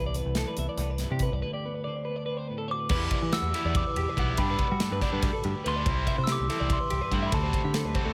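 A mellow, bell-like glockenspiel played with soft plastic mallets carries the melody from 2.7 seconds, its ringing high notes trailed by analog delay in this playful, bright cut of math rock and midwest emo. Underneath, two clean, twangy twelve-string electric guitars run from the start: one handles compressed accompaniment soaked in spring reverb and delay, and the other spins bright arpeggios higher up. A round, dark picked electric bass sits punchy and direct, while an up-front studio drum kit, with a punchy kick and medium-tuned snare in a pumping room, drives the 7/8 metre at 285 BPM in eighths. A break at 1.4 seconds gives way at 2.9 seconds to a second section, where a biting, double-tracked overdriven guitar adds a riff. The harmony moves through Cmaj9, D5, Em7, Gmaj7, C69 and D7sus4, all set in an echo-heavy mix.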